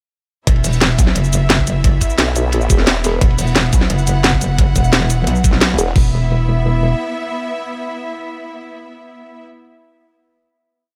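Mechanical and futuristic, this dark technical drum and bass piece at 175 BPM drops at 0.5 seconds into a knocking, layered electronic kick, a tight up-front kit with cracking snare, bright hats, shaker and crash, and a gritty, saturated breakbeat loop with dark cymbals sitting in the background, while an aggressive, distorted FM wobble bass with a metallic edge and chorus drives modulated phrases, a nasal, formant-filtered vowel-sweep wobble bass cuts in at 2.2 seconds, and a rich, biting symphonic string section holds sustained chords with light vibrato and sidechain pumping through to a final chord that begins at 6.0 seconds.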